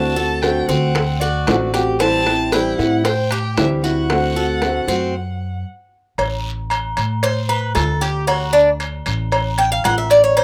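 Relaxed Cuban son and guajira, cut from a longer piece, where a bowed violin sings a smooth, expressive melody with vibrato and portamento over fingerpicked nylon-string guitar, bright, metallic tres arpeggios up front, woody pizzicato upright bass, high-tuned bongos and cowbell, ringing timbales and agogo bells and a raspy guiro in the background, until a stop at 5.1 seconds opens onto a tres solo from 6.2 seconds, captured in a rough home demo mix with light reverb.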